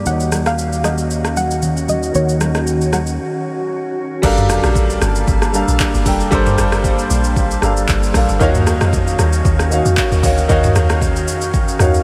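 A dreamy, reverb-soaked mix opens this hypnotic, soulful amapiano excerpt at 115 BPM with a gentle swing. A glassy FM pad and a lush-chorused grand piano hold Ebm7 from the start, while a soft, warbling pluck with tape echo carries the melody. Fingered electric bass, very quiet damped congas and an overdriven R&B kit with handclaps, rim clicks and shaker run alongside them. After a break at 3.2 seconds, the drop lands at 4.2 seconds on Gm9: a deep, dark log drum bass takes over the low end under the pumping pad, moving to Ebm9 before a grand piano fill at 11.5 seconds.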